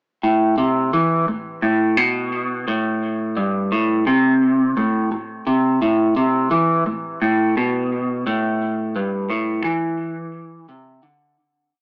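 A straight 4/4 pulse at 86 BPM carries this short, hypnotic rock piece in A minor. A lone clean electric guitar plays a picked single-note riff from 0.2 to 11.4 seconds, sitting low between G2 and E3. Its warm tone is placed up front and coloured by a phaser and tape echo, giving the repeating line a trippy, swirling quality. The recording has the rough character of a rehearsal room, with tube saturation, a small-speaker sound and a moderate studio ambience. A fade-out begins at 8.6 seconds and carries the riff to its close.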